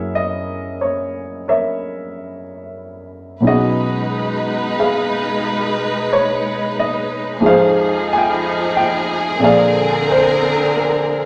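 A wet studio reverb surrounds this short piece cut from a longer performance, giving it an intimate, tender air. It is a slow jazz ballad at 60 BPM in 4/4, with the eighth notes swung. A baby grand piano with a natural, up-front tone carries the accompaniment from the opening, moving through chords such as Gb7 and B6 before settling on Fm7 and Bb9. At 3.4 seconds a symphonic string section enters with bowed, sustained chords, close and lush, its soft attack and vibrato adding an expressive ensemble glow alongside the piano. Both parts continue together until the excerpt ends at 11.3 seconds.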